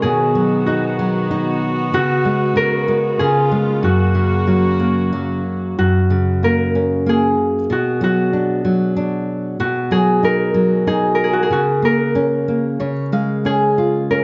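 Lightly reverberant and softly rounded at the top, this gentle, tender children's lullaby in F# major sways in 3/4 at 94 BPM with a rubato feel, passing through a C#7sus4 and a tender turn to B minor. A ringing, fingerpicked concert harp carries the melody up front over a dark, classical nylon-string guitar accompaniment, its finger squeaks audible and a short guitar fill arriving at 12.5 s. A distant, floating chamber string section adds pure, bowed sustained chords with a soft attack until 5.8 s.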